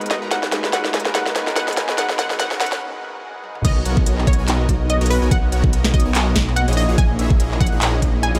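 A bittersweet, emotional future bass section opens on a half-time build-up: a trap kit with a sharp snare and crisp, tape-warm hats plays a drum fill over a thick, chorused detuned saw bass, a punchy supersaw stab riff and a gritty, barky electric piano set back in the mix. A faint riser, a lush detuned unison pluck carrying the melody with delay, and a very quiet, ethereal granular pad fill out the build before a short break at 2.8 seconds. The drop lands at 3.6 seconds with an overdriven, knocking kick up front, the bass, stab and pluck pumping against it as the chords shift from C#m11 to Bmaj7 and a rootless F#13/A#, while the electric piano drops out just after.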